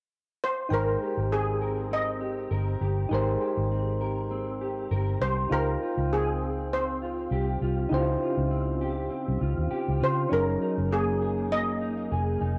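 Hazy and laid-back, this indie bedroom pop excerpt moves at 100 BPM in Ab major with a light 16th-note swing, drifting from Abmaj9 to Dbmaj9#11 and settling on Gb69 at 10.3 seconds. A bright, shimmering steel pan carries the melody up front from 0.4 seconds, struck with hard rubber sticks and thickened by ensemble chorus. Beneath it, a dark, clean fingered electric guitar with warbly pitch drift and cassette-tape colour, soft decaying electric-piano-like synth keys with chorus, and a round, foam-muted electric bass warmed by tube saturation all enter at 0.7 seconds, sitting in a lightly reverberant home cassette recording.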